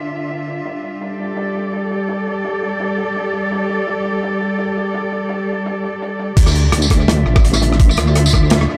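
A swung half-time drum and bass groove in 4/4 drives this dark, cinematic passage, where a woody, close cello section holds sustained bowed chords with vibrato and sidechain pumping over a smooth, rolled-off acoustic kit of snare, rim clicks, hi-hats, tambourine and crash touched with tape echo, until the drop at 6.4 seconds brings in a deep, chorused sawtooth-and-sine wobble bass and a knocking electronic kick in an echo-heavy small-room mix.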